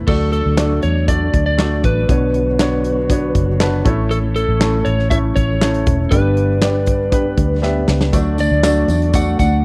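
Piano-driven pop at 119 BPM in 4/4, this short cut from a longer piece feels anthemic and uplifting, moving through D, Bmadd9, A and G before landing back on D. A clear, polished grand piano carries the accompaniment with audible action noise, taking a brief fill at 3.4 seconds, while a dark, round, foam-muted fingered electric bass sits up front beneath it. A slightly broken-up, compressed lead guitar plays the melody over a very quiet, flute-like tonewheel organ holding sustained chords through a fast rotary speaker with chorus vibrato. The modern studio kit is punchy and mid-forward, with kick, medium-tuned snare, hi-hat, handclaps and crash, and it plays a fill at 7.6 seconds. At 8.1 seconds a full-bodied, fingerpicked jumbo acoustic guitar riff and a jingly tambourine join in the background. The sound is dry and close, a 1970s-style studio recording in a small room.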